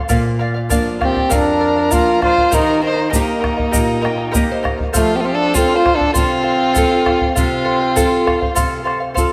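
Andean folk with a wistful yet festive air, this brief cut from a longer piece sets a clear, up-front classical-style trombone melody beside a smooth, vibrato-laden bowed violin line over shimmering fingerpicked charango, small fingerpicked nylon-string guitar with a fill at 3.7 seconds, a round, saturated bombo and a grainy tube shaker, all bathed in moderate concert hall reverb as the chords move from Bb to Eb to F.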